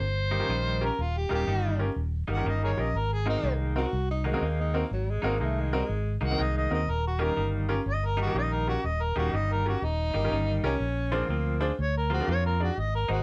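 A moderate studio reverb gives this short cut from a longer piece a sense of room. It is a rollicking, swaggering electric blues shuffle in Eb mixolydian at 122 BPM, swung in 4/4 over Eb9, Ab9 and Bb9 chords. An overdriven harmonica leads the melody up front, gritty and amplified, with tongue slaps, scooped notes, vibrato and a soft attack in a jazzy solo style. Beneath it, a fingered electric bass sits dark, round and prominent, while a bright upright piano adds woody, polished accompaniment with long sustain and audible action noise. A clean, compressed semi-hollow electric guitar plays a riff with tremolo, and both piano and guitar come in at 0.3 s. A breathy tenor saxophone adds a punchy, smooth-topped second line with scooped notes, first at 3.8 s and again briefly at 10.7 s.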